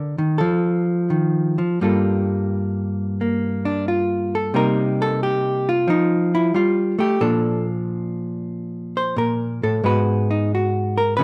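Solo jazz in G minor at 89 BPM with a loose, rubato swing, moody and smoky, carried by a single clean, picked hollow-body electric guitar placed up front in a dark production with light reverb, its solo from 1.8 s moving through Gm9, Cm7 and Bbmaj7 before arriving on Abm7 in this short cut from a longer piece.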